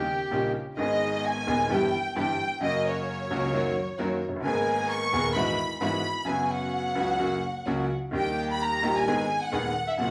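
A reedy bandoneon sounds for just half a second at the start of this sultry, dramatic tango, while a lush, bowed violin section with vibrato plays from the outset and takes the lead from 0.8 s. A brilliant concert grand piano with deep bass supports it, along with soft, dark sul tasto string stabs in the background. The band plays live in one room with a large studio reverb at a rubato 131 BPM, moving from G#m through F# to D# and back to G#m in this short excerpt of a longer piece.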